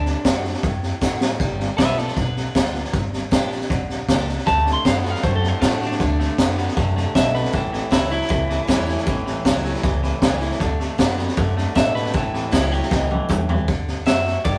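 A raw garage drum kit sits up front in this rowdy, upbeat rockabilly excerpt, with a high-tuned snare, a boomy kick and a gritty, saturated sound whose top end is rolled off. A clean electric guitar carries the lead as a solo, its picked tone dark and scooped and bathed in spring reverb. Underneath, a woody upright bass thumps out plucked gut-string notes, while a boxy parlour steel-string acoustic guitar picks along in the background with fresh strings and the odd finger squeak. From 4.5 seconds a bright, compressed, twangy electric guitar adds a low riff, and the drums roll into a fill at 12.9 seconds as the chords move through D7, G7, Gm7 and A7. The whole cut has the rough, lightly reverberant feel of a rehearsal-room take, warmed by saturation.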